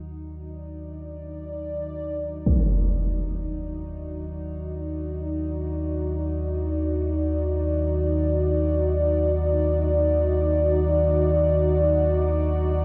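Dark ambient drone in free time, this unsettling, desolate passage is cut from a longer piece and rests on an Eb minor chord in Eb harmonic minor. A deep, rumbling drone with its own built-in reverb holds the low register from Eb2 to Eb3 beneath a sweeping, full-bodied pad of sustained chords treated with chorus, both running through the whole 12.8 seconds. A huge, muffled impact lands at 2.5 seconds, and a wet spring reverb with a 2.2-second decay hangs over the recording.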